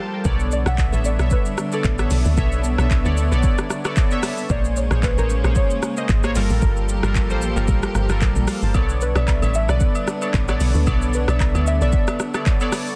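The woody log drum bass stands out most, punchy and dark with a fast attack that decays quickly, sitting up front from 0.3 seconds in this hypnotic, soulful amapiano piece at 113 BPM with a 16th-note swing. The electronic afro-pop drum kit arrives at 0.2 seconds with a deep kick, metallic hi-hat, handclaps, rim click and shaker, carrying a tape-warm, produced character up front in the mix. Airy analog keys with a warbling, detuned vintage tone and chorus open the cut with a fill over a break, then move through Bm9, A#m9 and Gm9 chords, while a lush bowed string section pumps with sidechain in the background. A soft, round pluck carries the melody with chorus and delay, its wave-folded tone kept dark and gentle. From 8.7 seconds, acoustic agogo bells and woodblock join, close-miked yet set in the background, and the whole is dry and densely limited in a modern master.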